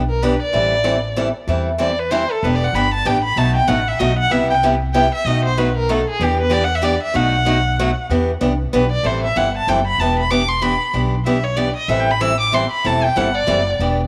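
Swinging and fiery, this short cut from a longer piece of acoustic string swing in the jazz manouche style moves in a lilting 3/4 with a moderate swing on the eighths. A rich, bowed violin carries the solo throughout, played by one player with expressive vibrato and portamento, its tone sounding somewhat distant yet still placed up front. Beneath it, a picked acoustic archtop guitar supplies the accompaniment with a bright, boxy sound, complete with audible finger squeak. An upright bass anchors the bottom end with woody, thumpy pizzicato on gut strings. The harmony cycles through minor-key changes built around Em7, Am7 and B7, with a turn to Cmaj7 before the opening section repeats at 8.1 seconds, all set in a light studio reverb.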